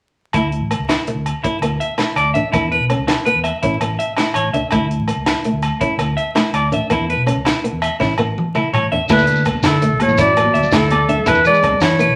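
Highlife guitar band in a sunny, carefree 12/8 at 110 BPM, cut from a longer piece and set in a club reverb with vinyl crackle. A boxy, woody fingerpicked acoustic guitar with old strings and clean, picked electric guitar arpeggios up front sit over a round, dark fingered bass, a tight, dry funk kit with bright cymbals and a high-tuned snare, and ringing agogo bells, with a drum fill from 8.0 to 9.1 seconds. At 9.1 seconds a breathy, up-front clarinet takes a jazz-style melody with vibrato and scooped notes, while a mellow trombone plays a second line in the background and hard-handed congas and a grainy shekere join the percussion.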